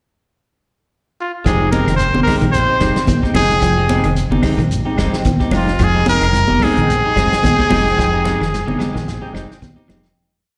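Driving and intense, this short afrobeat piece moves at 110 BPM in F minor with a swung sixteenth-note feel, its trumpet entering on a pickup before the full band settles on a sustained Fm9 groove at 1.5 seconds. The brilliant trumpet sits up front with vibrato and punch, spinning a motif-based melody in sentence-like phrases, carried by plate reverb and slapback echo. Beneath it, a deep dub fingered electric bass plays a round, syncopated riff, while a soul drum kit with a punchy kick, medium-tuned snare and rolled-off top drives an afro groove alongside hard-handed, high-tuned congas, a grainy shekere and very quiet woody claves tapping a five-stroke time line. A slightly broken-up guitar picks a background ostinato of arpeggios, a clean guitar strums rhythmic stabs in upper chord shapes with subtle chorus, and a dark tonewheel organ adds rootless, syncopated chord stabs through chorus vibrato and a slow rotary speaker. 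Heard through a venue's PA in a moderate club ambience, the performance closes with a drum fill as the sound fades out from 8.0 seconds.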